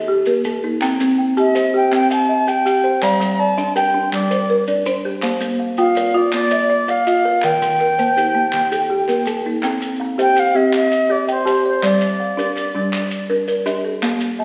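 A bright, reedy baroque flute melody opens over a buzzing kalimba and a woody folk marimba, which weave arpeggios in a hypnotic, warm southern African mbira-style cycle at 109 BPM in 12/8 tuned to C equiheptatonic, with grainy maracas joining at 0.3 seconds and crisp group handclaps at 0.8 seconds, the ensemble ringing in a recital hall until the flute falls silent at 13.3 seconds near the close of this fragment of a longer piece.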